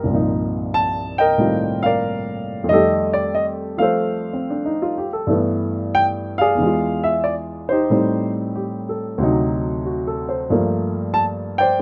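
A cool, swinging 4/4 lilt at 92 BPM with a 68% swing on the eighths carries this solo jazz piece in G minor, cut from a longer performance. A baby grand piano plays alone throughout its 11.8 seconds, spanning C2 to A5 with a natural, up-front tone and short sustain, moving through Cm11, F9, G69, E7b9, Am7b5 and D7b9 before settling on Gm9. The small room ambience and rough home-demo mix, with nothing above 10.9 kHz, give it an intimate, unpolished feel.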